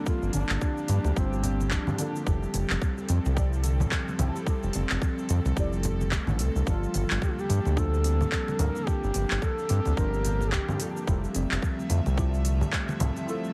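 The sound is dry and heavily compressed, with a radio-like squeeze over a short cut from a longer organic downtempo piece in G dorian, moving at 109 BPM with a light 16th-note swing and a warm, mystical mood. Up front, an overdriven, tight electronic kick and a round, deep analog bass with tube saturation and sidechain pumping anchor the groove, joined by a crisp, overdriven drum kit of congas, handclaps, hi-hat and shaker, plus very quiet, close congas played with soft hands. Behind them, a steel tongue drum rings out pure, meditative arpeggios struck with firm rubber mallets, roughened by vintage 12-bit sampler grit and delay. An airy, breathy pad with a warbling, detuned vintage character holds sustained chords under chorus and sidechain pumping, while a dark, wave-folded chord stab adds short, soft accompaniment through chorus, phaser, pumping and delay. A mellow solo duduk with vibrato and scooped notes sings a folk-style melody with delay, heard at the start until 2.1 seconds and again from 6.7 to 11.0 seconds. 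The harmony moves from Gm7 to Fmaj7, back to Gm7, then to Dm7/F near the end, with a break at 13.3 seconds.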